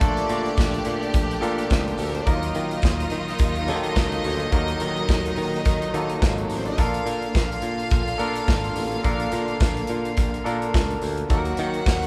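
A barky, bright tine electric piano sits up front with a clean tone through a combo amp, carrying the accompaniment in this celebratory, joyful disco clip with a swung sixteenth-note feel. A punchy, airy modern drum kit with a medium-tuned snare drives it alongside a growly, picked electric bass, while a very quiet, jingly vintage tambourine adds sparkle. Two bowed string sections fill out the harmony: one floats a rich, soft-attacked second line, and the other holds lush, vibrato-laden sustained chords in the background over Bbmaj7 and Ebmadd9 harmonies, all in a moderately reverberant large studio room.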